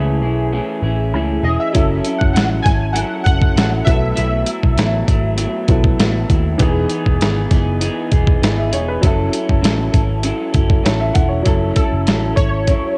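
A straight 4/4 groove from a gritty, overdriven sampler-style drum kit with a thumpy kick sits up front from 1.7 s in this wistful, mellow indie and bedroom-pop fragment, under a dark, round foam-muted picked bass, a slightly broken-up electric guitar bathed in lush chorus and vibrato, a woody, slightly detuned upright piano with audible action noise, and an evolving, detuned analog-keys melody with analog delay that appears at 1.4 s and returns at 11.8 s, captured as a home cassette recording with light reverb.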